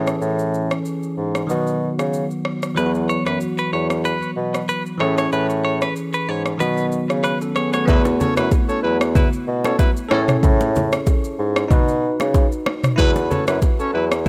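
A mellow bassoon carries the bass line with light vibrato and a smooth, classical-style top in this joyful, breezy afrobeats excerpt in E major at 94 BPM, set against a bell-like, lush-chorused tine electric piano and an up-front, electronic afro-pop kit with a deep kick, rim click, shaker and toms. A twangy, compressed clean electric guitar riff with digital delay appears from 2.8 to 7.8 seconds, and the kick drops out from 5.3 seconds until the second section begins at 7.9 seconds. There, a pop-style horn section adds a second line alongside ringing congas and bongos, all within a light small-room ambience over chords cycling through Amaj7, B and Esus2.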